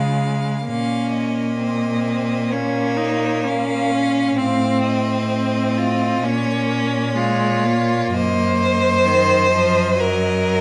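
A bowed second violin with even vibrato stands out most in this serene slow romantic movement for string quartet, moving rubato at 64 BPM in 4/4 with A4 tuned to 442 Hz. Above it, the first violin sings a rich, close melody between Db5 and F5, while a clear, focused viola fills in the accompaniment and the cello carries a smooth bass, with all four players sounding throughout. Moderate recital hall reverb gives the excerpt a warm space as the harmony passes from Db through Bbm and F/A, reaching Ebm/Gb at 8.1 s.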